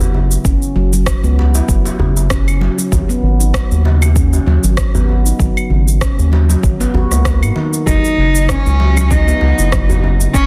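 A lightly swung 4/4 groove of layered electronic shaker, rim click and claves with a gently clipped snare, an overdriven deep electronic kick entering at 0.4 s and a tight, cracking, distant djembe carries this earthy, peaceful organic downtempo excerpt, where a round, up-front analog bass anchors the low end beneath ringing, meditative handpan arpeggios with tape echo, until a dark, intimate cello with vibrato and an airy sul tasto bow joins at 7.9 s to carry the melody, all within a dense, heavily limited modern master.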